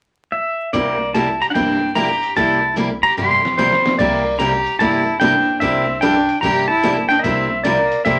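Western swing country with a playful, swinging lilt, cut from a longer piece and colored by vinyl crackle and a small, wet room. Up front, a clean, fingerpicked pedal steel guitar carries the melody with slides and volume swells from 0.3 seconds, joined at 0.7 seconds by a biting, nasal fiddle on a second line and a bright, picked dreadnought acoustic guitar over a C9 chord. Further back sit a boxy upright piano that drops out at 7.5 seconds, a woody pizzicato upright bass on gut strings, and a muffled, tape-warm sampler-style drum kit whose fill from 3.2 to 4.0 seconds leads into the second section.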